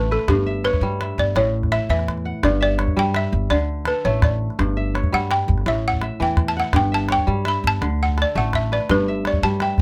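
Rolling in 12/8 at 112 beats per minute, counted in dotted quarters with a straight feel, this joyful West African traditional excerpt runs 9.8 seconds, cut from a longer piece and set in G lydian. The balafon carries the melody as a featured solo throughout, its buzzing, woody keys struck with rubber mallets and heard dry, full and up front. Beneath it, the kora spins ringing, crisp fingerpicked arpeggios, also close and forward. A warm pizzicato upright bass with steel strings anchors the low end, while a small calabash joins at 0.2 seconds, sounding as if in a small room. The harmony moves from G through A, D and Em6/G to A13/G before settling back on G, all captured with close, detailed microphones and light reverb.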